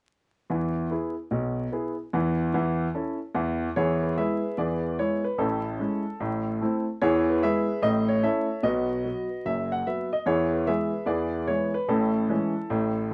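A clear grand piano sits up front and plays alone throughout this swinging, exuberant stride jazz passage, ranging from deep bass notes to the upper middle of the keyboard. The swung rhythm drives the music forward, and a fresh section begins at 3.8 seconds, with the harmony moving between major-seventh, minor and dominant colours. A moderate club reverb surrounds the piano, while vinyl crackle and a dulled top end give the recording an aged character, as if lifted from a longer performance.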